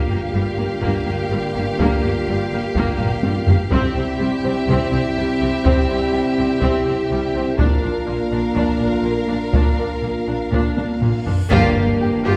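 Epic and heroic, this cinematic orchestral film-score cut at 124 BPM in G dorian builds steadily as lush, vibrato-rich violins carry a high melody over a second violin line, clear violas, dark trombones and mellow French horns holding roomy sustained chords, and smooth cellos and double basses in the background, all driven by hard-hit, saturated taiko with fills before a reverse cymbal at 11.2 seconds and a huge bright impact at 11.5 seconds bring in articulate timpani and a very quiet woody string section, the whole bathed in a wet concert-hall reverb.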